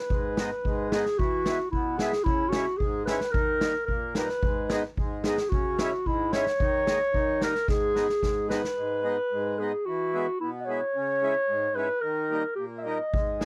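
A straight 2/4 pulse at 110 BPM drives this jolly, bouncy alpine folk dance in G# minor, cut from a longer piece, with a street-band drum kit's boomy kick and medium-tuned snare playing a fill from 7.7 to 8.8 seconds, then dropping out until 13.1 seconds. Over it, a dark, soft-attacked clarinet carries the classical-style melody, while a reedy, full accordion supplies the chords, circling G#m, E, C#m and D#. The dry, close 1970s-style studio sound keeps all three parts up front, though the clarinet has a distant, roomy quality and the polished drums carry a big-room feel.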